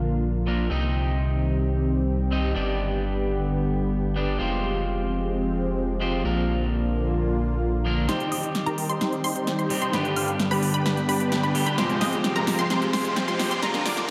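A huge, detuned supersaw riff enters at 8.1 seconds under a filter sweep, joined by tape-echoed pluck arpeggios, punchy overdriven big-room drums with crisp hats, and a very quiet riser from 10.7 seconds, building on an opening where a twangy, slightly broken-up electric guitar, a lush chorused unison pad with 12-bit grit and a deep saturated sub bass carry the euphoric, emotional festival progressive house chords through a dreamy, reverb-soaked mix cut from a longer piece.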